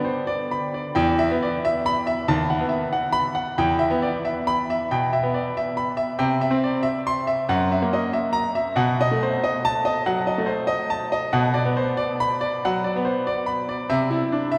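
A bright grand piano plays alone throughout this short passage from a longer baroque-style suite movement, its brilliant, open tone sitting up front with a short sustain. The music is in E minor at 93 BPM in 4/4, taken with a rubato feel, and the mood is radiant and serene. The piano ranges from D#2 up to C6, moving through a harmonic path that settles on Em at 1.0 seconds and passes through B7/D#, C, F#7 and B7 before reaching Bm around 11.3 seconds. A rootless Am/C arrives near 13.9 seconds, just before the clip ends at 14.6 seconds. The performance is bathed in a wet cathedral reverb with a long decay, giving the crisp piano a spacious, glowing halo.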